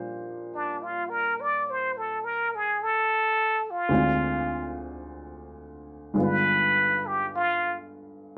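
Tender and intimate, this brief jazz ballad excerpt moves with a slow swing as a plunger-muted trumpet carries the melody from 0.5 seconds, its punchy, vintage wah-wah tone full of scooped notes. Underneath, a baby grand piano accompanies with a natural, short-sustained sound, its action noise audible up close. A moderate club reverb gives the pair a small-room glow, while the harmony passes through a Bb69, Dm7b5 and G7b9 progression.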